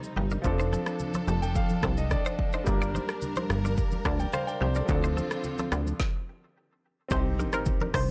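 A hypnotic, mellow afrobeats groove opens on clear concert grand piano, lush bowed strings and an up-front afro-pop kit with deep kick, woody snare and crisp hats, joined at 0.2 s by a punchy, sawtooth-edged analog bass, a bright, twangy clean electric guitar riff with phaser and delay, and background congas, before the piano adds a fill, the strings drop out at 6.0 s for a brief stop, and a hollow, bouncy square pluck melody with chorus and delay enters at 7.1 s, followed at 7.3 s by a very quiet electronic impact.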